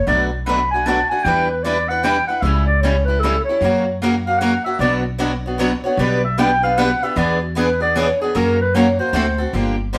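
Swinging and virtuosic, this short cut from a longer acoustic string swing piece in the jazz manouche style moves at 152 BPM in a lilting 3/4, with a 63% swing on the eighth notes, in B minor. A breathy clarinet takes the solo from 0.0 to 9.5 seconds, its dark, whispered subtone carrying vibrato, soft attacks and scooped notes in an intimate jazz voice. Beneath it, two picked acoustic guitars accompany: one a steel-string with a parlour character, the other a bright, boxy swing-style guitar with fresh strings. An upright bass, played pizzicato with a woody, dusky tone, sits up front and anchors the low end. The band plays live together in one room with moderate studio reverb, while the harmony travels from Bm7 through C#dim and F# to Bmadd9, E7 and a closing D7.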